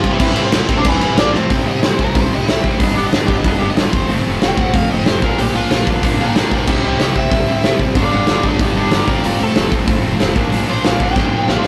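A rowdy, energetic punk rock excerpt in C mixolydian at 186 BPM opens with the full band at once: an up-front big rock drum kit with a punchy kick and a dark, smooth big-room sound, a compressed, distorted picked guitar riff, a very quiet sludgy overdriven guitar riff, and a woody, thumpy pizzicato upright bass on gut strings sitting in the background. After a drum fill at 1.3 s, the bright, overdriven picked lead guitar takes a solo from 1.5 s over a cycling C, G, F, Bb progression, and a final drum fill arrives at 11.2 s. The recording is a rough rehearsal-room capture with moderate room ambience.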